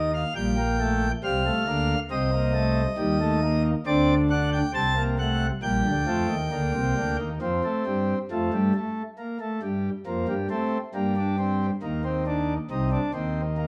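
A pipe organ on a full principal chorus, with baroque voicing and audible chiff, sounds up front through this serious, contemplative passage from a three-part fugue in the baroque style, spanning Bb1 to A5 at a steady 68 BPM in 4/4. The harmony moves through G minor, a diminished chord and D7 in the opening section before a second section beginning at 7.4 seconds turns toward F, Eb/G and a closing Cm9. A wet stone room reverb with a 1.1-second decay gives the organ a resonant bloom in this short cut from a longer piece.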